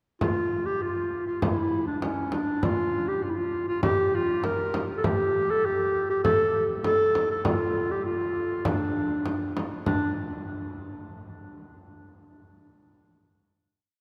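Longing and melancholic, this short Arabic maqam ensemble piece in straight 4/4 sets a mellow clarinet up front, playing a modal melody with ornaments, light vibrato, subtone and scooped notes between C#4 and Bb4, over a soft-handed frame drum with a low and high stroke pattern, both heard from 0.2 to 10.1 seconds in a cathedral-like reverb that carries a final note to 12.3 seconds.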